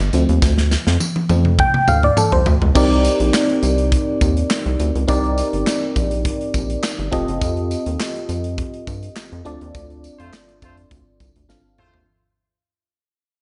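A glassy FM electric piano with a bell-like attack and a warbling chorus opens this early-eighties boogie funk excerpt, taking a solo over the first 2.8 seconds while the drums fill underneath. A rubbery, hollow square-wave bass with a quick filter pluck drives the groove from the start at 103 BPM in C dorian, moving through Dm7, Cm9 and F9 with a danceable, funky bounce. The polished acoustic drum kit sits up front with a tight kick, a medium-tuned snare, hi-hat, toms, handclaps and crash, while a jingly tambourine stays in the background. A distant, roomy horn section slips in near the end at 10.2 seconds as the band hits a closing accent and a final drum fill. The mix is dreamy and soaked in plate reverb, with a dulled top end and a faint mains hum, and the whole passage fades out from 2.8 seconds onward.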